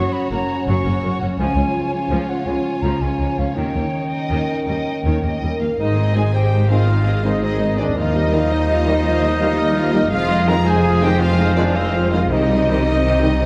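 Cut from a longer cinematic piece, this adventurous, soaring passage in 12/8 at 111 BPM opens with a distant violin section carrying the expressive, gliding melody over a focused second violin line, an airy flute, clear violas, mellow French horns holding chords, a ringing fingerpicked harp running arpeggios, and rich, lush cellos and smooth, even double basses anchoring the bass, before a smooth solo clarinet and mellow trumpet stabs join at 5.8 seconds and a very quiet, bright trombone section adds sustained chords from 6.2 seconds, all bathed in a wet concert hall reverb.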